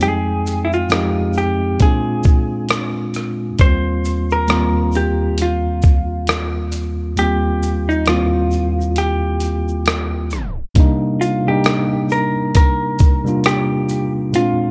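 A dark, picked hollow-body jazz guitar melody with tape echo opens this cosy, mellow, swung lo-fi hip hop excerpt over a worn, slightly out-of-tune tine electric piano, a gritty sampler-style soul drum kit with a thumpy kick, and a grainy egg shaker tucked in the background, until the kick falls silent at 7.2 seconds and a tape stop at 10.3 seconds leads into a new section at 10.8 seconds.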